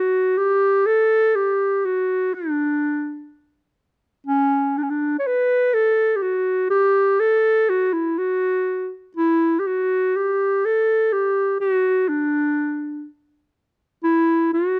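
In free time, this passionate, warm Arabic excerpt features a solo clarinet up front, playing in a classical style with a mellow tone and smooth top across a range from C#4 to C#5 for its full 14.8 seconds, under light reverb in an open outdoor setting tuned to A4 = 442 Hz.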